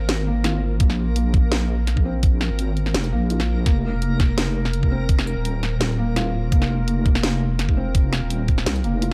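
A half-time drum and bass groove at 168 BPM in 4/4 rides a lightly swung sixteenth feel, with an up-front, knocking electronic kick arriving at 0.8 seconds alongside a layered kit of cracking snare, hi-hat and tambourine. The mood is spacious and cinematic, set in a dark digital ambience. From the very start, a deep wobbling bass built from detuned square and sine tones carries compressed, sustained weight with a chorus sheen. Above it, a felt-muted upright piano plays soft, intimate arpeggios through a delay, its thick felt and audible action noise keeping it mellow as the harmony moves from Bbsus2 to F5. In the background, a reversed, granular texture swells on a single bright Bb4, dreamy and bathed in its own reverb. This short passage is cut from a longer piece.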